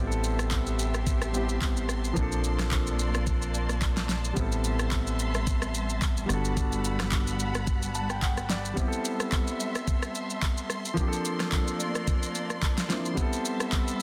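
Late-night and hypnotic, this amapiano excerpt at 109 BPM in A dorian sets an up-front, intimate grand piano with audible action noise over distant, dark bowed chamber strings pumping under sidechain, a punchy sawtooth-and-pulse analog bass with a filter pluck that drops out at 8.7 seconds, and a knocking, produced R&B kit of handclaps, rim click, shaker and a fat soft-clipped snare, with a piano fill from 7.7 to 8.8 seconds as the chords move between Am7, Bbmaj9 and Gmaj9 in a dense, heavily limited small-room mix.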